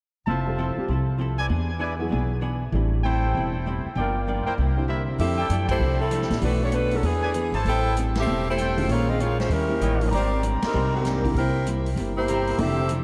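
This joyful big band swing excerpt in F major moves at a brisk 195 BPM. It opens with a dark, clean hollow-body guitar and a natural-sounding baby grand piano comping in the background, a woody, thumpy upright bass played pizzicato up front, and a clear, smooth-topped trumpet section punching out stabs through a diffuse ambient delay. At 5.2 seconds the close-miked saxophone section takes the melody, tight and forward in the mix with its own diffuse delay. At the same moment a distant, roomy drum kit joins on hi-hat, ride, snare and kick, its cymbals dark, its kick boomy and its top rolled off. The full band lands accents at 5.7, 8.1 and 10.6 seconds, while the harmony shifts from Fmaj7 and E7 through Bbm7, Eb7b9 and Abmaj9#11 before settling on C7. A huge ambient reverb soaks the whole mix, lending the swinging ensemble a dreamy glow.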